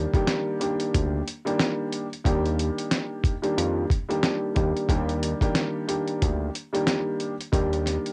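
A dark, woody upright piano carrying audible action noise and cassette-tape character and a fat, saturated, detuned sawtooth bass with a filter sweep open this confident, nostalgic boom-bap hip-hop excerpt at 91 BPM in Eb major, swung on the 16ths over a single Ebmaj7 chord, joined a moment later by gritty, thumpy sampler-style drums with a tape-worn edge, all in a lightly reverberant, intimate home-recorded sound.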